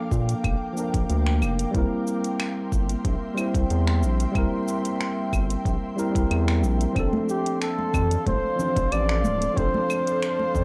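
A home cassette recording in a moderate studio reverb gives this sunny, warm sunset chillout piece its straight 4/4 feel, with a worn, slightly out-of-tune tine electric piano through a combo amp, treated with tape echo and plate reverb, moving over Bbmaj7 and C7 beneath an ethereal, airy pad of detuned unison chords with ensemble chorus. A round, deep analog bass with transformer saturation sits up front alongside a knocking electronic kick and a smooth R&B kit of metallic hi-hats, claves, finger snaps and shaker. As the harmony settles on F6 at 7.0 s, acoustic congas enter in the background at 7.1 s, and a mellow, close-miked flugelhorn takes a jazz-style solo with vibrato from 7.3 s.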